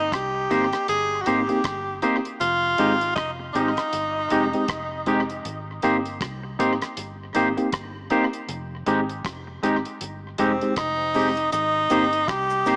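Heard as if through a small speaker, with a light small-room reverb, this excerpt of smooth, romantic lovers rock reggae moves at an unhurried 79 BPM in 4/4 with a swung sixteenth feel, in Ab major. A bright, breathy tenor saxophone sits up front with vibrato and tape echo, carrying a pop-style solo melody that pauses at 5.0 seconds and returns at 10.4 seconds. Beneath it, a dark, round, foam-muted fingered electric bass gives a punchy low anchor. A damped 70s drum kit plays dry, with a tight kick, hi-hat and rim click touched by tape echo. A clean, twangy fingered electric guitar adds stabs through spring reverb, while a worn, slightly out-of-tune tine electric piano supplies accompaniment over the gently alternating Abmaj7 and Fm9 chords. A very quiet acoustic cabasa slips in at 11.5 seconds.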